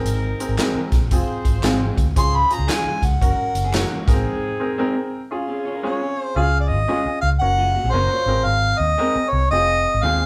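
A mellow horn section, a worn concert grand piano and a dark, round, foam-muted electric bass open this danceable, uptempo 1960s-style soul piece in Db major at 114 BPM with a swung feel, joined at once by a punchy, airy big-band drum kit, background tambourine and handclaps, and slightly broken-up, lo-fi, compressed guitar stabs through a small old amp, before a roomy, up-front harmonica takes the melody at 2.2 seconds, a second slightly broken-up guitar riff with spring reverb slips in behind it, and the drums and percussion drop out at 4.2 seconds for a break, the band heard together in a moderately reverberant small room.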